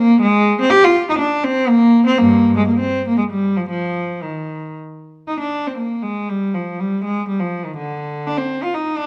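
A dark, warm recording places a single rich, reedy cello up front in a stone room whose wet reverb lingers for about 1.2 seconds. This grave yet flowing baroque-style suite movement for unaccompanied cello moves in 3/4 at roughly 112-125 BPM with a free, rubato feel. The bowed gut-string tone in period style spans G2 to G4, and the passage is cut from a longer piece, its opening material heard and then restated at 5.3 seconds.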